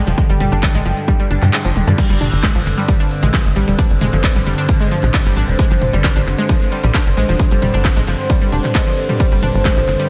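Driving peak-time techno at 133 BPM in G phrygian, intense and relentless, cut from a longer piece and built on an overdriven, up-front electronic kick and a tight, nasal sequencer bass with sidechain pumping and tube saturation. A detuned analog pluck riff with ring modulation, chorus and delay sits over a resonant overtone-sweeping drone with phaser in the background, while a deep, moody ambient pad adds a dark sub-octave haze high above. The techno drum kit brings smooth hats, claps, ride, crash and toms in a small room, and the kick drops out from 1.5 to 2.0 seconds as a drum fill lands at 1.8 seconds.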